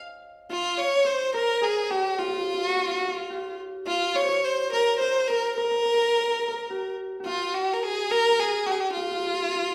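This Arabic maqam ensemble piece, cut from a longer performance, moves in 6/8 with a hypnotic, soulful mood. A Celtic harp opens alone at 0.0 seconds, its thumb-plucked, ringing tone sitting back in the mix as a second line. At 0.5 seconds a single bowed violin enters with the melody, up front and close, its clear, focused sound carrying vibrato. The harp's warm, acoustic tone supports the violin while both play together through to 9.7 seconds. The ensemble plays live in one room, wrapped in a generous large-studio reverb that lends the performance a spacious, immersive quality.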